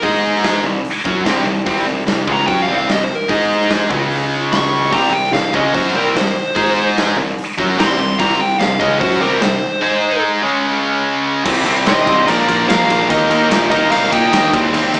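A straight, driving 4/4 pulse from a big acoustic rock kit with a punchy kick and medium-tuned snare sets a menacing hard rock groove in this section cut from a longer piece, while a growly fuzz bass and two background rhythm guitars, one overdriven and one scooped and high-gain, churn out the riff. A dark, smooth overdriven lead guitar carries a solo on top, and a double-tracked overdriven rhythm guitar joins from 4.9 to 11.4 seconds before the chords turn to Cm, Bb and Eb. There, a fuzzy octave lead adds a second line from 11.9 seconds, all heard through a large studio reverb with a live, one-room, small-speaker sound.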